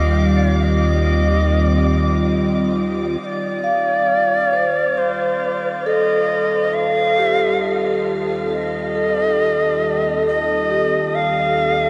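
Weightless and serene, this ambient excerpt drifts at 68 BPM in a straight 3/4, tuned slightly low to A4 = 435 Hz and cut from a longer piece. Up front, a bright, reedy shakuhachi carries the airy, bamboo-toned melody with vibrato and a soft attack, while a vibraphone played with medium mallets rings out metallic arpeggios with fast motor vibrato, both trailed by a diffuse ambient delay. Beneath them, a warbly, tape-like pad holds nostalgic, lo-fi chords through chorus and its own reverb; it carries a filter sweep until 3.2 seconds, then fades in along with a vintage, detuned analog drone sitting in the background. A round, deep analog bass anchors the opening alongside a drifting, glassy harmonics texture, and both stop at 3.2 seconds as the harmony shifts from an F7 over Eb lacking its third to a full F7/Eb. A long, wet shimmer reverb bathes the whole sound until the cut at 11.9 seconds.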